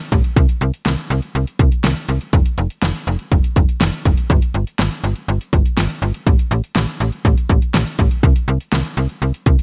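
A pop drum kit opens this upbeat, nostalgic synth-pop excerpt, with a slap-like FM bass joining at 0.1 seconds. The tempo sits at 122 BPM in a straight 4/4, and the tuning is set slightly high at A4 = 444 Hz. The electronic, layered kit is placed up front, pairing a punchy kick and a fat snare with metallic hi-hats and a tape-tinged finish. The digital FM bass is also up front, snappy and fast in its attack before decaying, and it stays low in the range from F1 to C2. The room sound is dry with little reverb, and both parts play together until the cut at 9.6 seconds.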